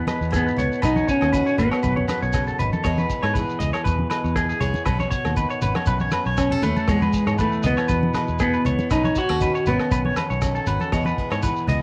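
Highlife guitar band music in E major at 119 BPM, this short cut from a longer piece feels joyful and sunny, with a gentle swing on the sixteenths. An up-front, clean semi-hollow electric guitar carries the melody, playing from the start to 2.1 seconds and returning from 6.4 to 10.1 seconds, while a second, bright and compressed semi-hollow guitar spins arpeggios higher up through tremolo and analog delay. Beneath them a plugged-in steel-string acoustic guitar picks out the accompaniment with an auditorium ring, and a round, foam-muted fingered electric bass anchors the low end as the chords move between E and Badd9. A dark, smooth soul drum kit with a tight kick, hi-hat and rim click sits in the background alongside low-tuned, soft-handed congas and ringing, saturated agogo bells, with a grainy, mellow shekere adding texture. Light reverb and the character of a home cassette recording give the whole band an intimate, homemade charm.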